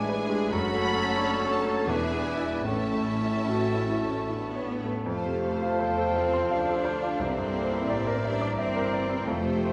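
A clear grand piano sits up front and carries the melody across a range from C2 to D6 in this lush, lyrical romantic movement for piano and orchestra, heard as a short cut from a longer piece. Set in 3/4 with a rubato feel at roughly 73-91 BPM, the music opens in A major and moves to F major at 5.1 s, where the harmony shifts from A to F and then to a C9 chord. Behind the piano, a rich, distant violin section also carries the melody with smooth vibrato. A second violin section, a pure, hollow flute, and a solo clarinet weave countermelodies, and a distant, roomy oboe joins them at 5.1 s. A mellow bassoon and a very quiet viola section fill the accompaniment, while a focused cello section and a close, bowed double bass section anchor the bass, and a mellow French horn section enters at 0.5 s with sustained chords. The whole ensemble sits in a reverberant recital-hall acoustic, giving the sound a spacious, concert-hall glow.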